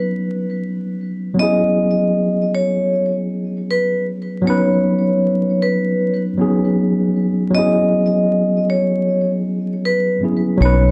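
A laid-back 78 BPM groove in 4/4 with a lazy 16th-note swing sets up this dreamy, nostalgic lo-fi hip hop fragment, tuned slightly flat of standard pitch and cut from a longer piece. A worn, lightly overdriven tine electric piano carries the accompaniment through cassette-tape coloring, sounding slightly out of tune as it moves between Badd9 and E69 chords. Above it, a hard-mallet vibraphone plays the melody with a metallic, ringing tone, a slow motor vibrato and a trail of tape echo. A round, deep dub fingered electric bass arrives only at 10.6 s, landing up front just as the clip closes at 10.9 s. The whole mix sits in a dark production with a short, wet studio ambience and a bed of vinyl crackle.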